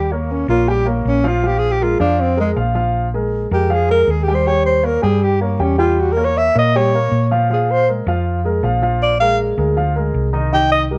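Jazz at a lively 158 BPM in straight 4/4, sunny in mood, this short cut from a longer piece features a breathy, close-miked alto saxophone soloing up front with vibrato, soft attacks and scooped notes, its intimate, whispered tone set in plate reverb until 10.8 seconds. A dark, mellow baby grand piano accompanies through changes from Eb7 to Edim7 and Bb7, while a round, amped hollow-body short-scale electric bass, played fingered, anchors the low end. The whole take sits in a moderate studio room and carries the warbling pitch drift of worn old cassette tape.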